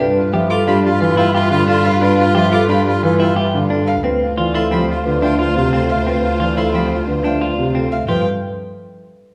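A straight 6/4 pulse at 178 BPM drives this bright, propulsive minimalist classical excerpt in G mixolydian, moving from G9 to Dm9, where a woody marimba carries the melody over a bowed double bass up front with portamento, a clear, close-miked soprano saxophone holds a second line on F4, a twangy, compressed clean electric guitar picks arpeggios, lush symphonic strings sustain chords in the background, a concert grand piano with deep bass accompanies from 0.3 s, and a single dark violin adds faint arpeggios from 0.5 s, all set back in a wet, large studio reverb.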